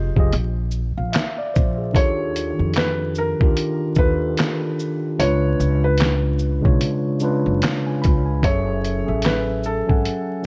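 Vinyl crackle hangs over this dry, close-sounding excerpt from a longer lo-fi hip hop piece, reflective and hazy at 74 BPM in 4/4 with a 16th-note swing. A mellow tine electric piano carries the accompaniment, its clean tone heard through built-in speakers, dulled by cassette tape character and a low-pass filter, and placed up front. Beneath it, a pizzicato upright bass with steel strings gives a woody, warm and thumpy low end, while a sampler-style drum kit of handclaps, hi-hat, shaker, thumpy kick and fat snare sounds compressed, pitched down and muffled, as if re-recorded in a small room. At 2.0 seconds a felt-muted upright piano takes the melody in a narrow, soft register, intimate and filtered, with audible action noise and short sustain from its thin felt. The harmony moves through lush extended chords such as A#add9, D#maj9#11 and C#7b9 before shifting to F#m9 at 8.4 seconds, where the closing section begins.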